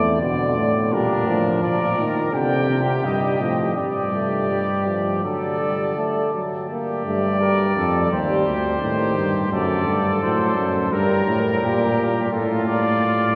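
A classical imitative canzona for brass ensemble, lively and joyful in a straight 4/4, cut from a longer piece and bathed in the wet cathedral reverb of a church or concert hall. A mellow, punchy trumpet with a vintage character carries the melody up front, joined at 0.9 seconds by a second trumpet with light vibrato and a smooth top, while a clear, soft-attacked euphonium accompanies until 12.3 seconds. Beneath them, a close-miked, warm bass trombone holds the bass line up front.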